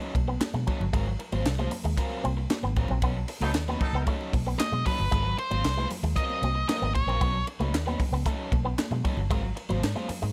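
A playful, gritty funk groove at 115 BPM in Ab mixolydian opens with an overdriven semi-hollow guitar and ringing, high-tuned congas in the background. A dark, round, foam-muted vintage bass and a dry, tight drum kit with bright cymbals, handclaps and a high-tuned snare join almost at once, while a clean, twangy guitar through an envelope filter carries the riff over chords shifting between B9 and Ab13. A band accent from 3.0 to 5.1 seconds brings a brief, distant horn section line with light vibrato, and at 4.6 seconds an up-front octave-fuzz lead guitar plays a short, distorted melody in a small room, all cut from a longer piece.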